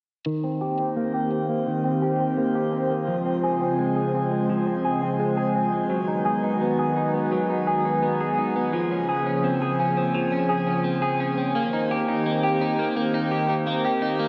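Dreamy and floating, this dream pop fragment drifts at 85 BPM as a bright, picked clean electric guitar plays up-front arpeggios through analog chorus, tape echo and a low-pass filter. Beneath it, a hollow, flute-like pad with a slow attack holds mellow, detuned chords through chorus and its own low-pass filter, moving from Cm7 through Dbmaj7, Cb6 and Bbm9 before returning to Cm7 at 11.6 seconds. The whole mix sits in a wet shimmer reverb with worn cassette warble and a filter sweep running throughout.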